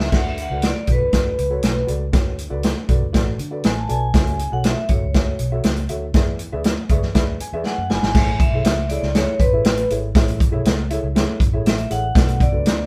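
Uptempo 1960s-style soul at 120 BPM in A major, this danceable, joyful passage cut from a longer piece sets a ringing vibraphone melody with slow motor vibrato over a round, foam-muted electric bass, an up-front vintage drum kit with a punchy kick and dark cymbals, and a mellow, woody upright piano whose fill at 6.6 seconds meets a drum fill just before the shift at 8.1 seconds from D6, F#m7 and E7 onto Amaj7 and Bm7, all captured as a band playing live in one modest studio room.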